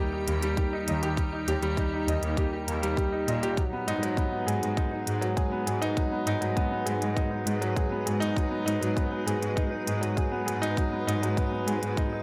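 Lightly reverberant, this cinematic, hypnotic stretch of piano and strings electronica moves at 100 BPM in G# minor, shifting from D# to G#m7 at 3.6 seconds. An up-front grand piano with long sustain and delay plays a riff over a reedy, gut-string chamber cello section bowing the bass line, while a blurred, granular cloud pad holds sustained chords in the background with built-in reverb. A tight electronic kick sits forward, crisp electronic hi-hats come in at 0.3 seconds, and sidechain pumping moves through the pad and cellos in this section cut from a longer piece.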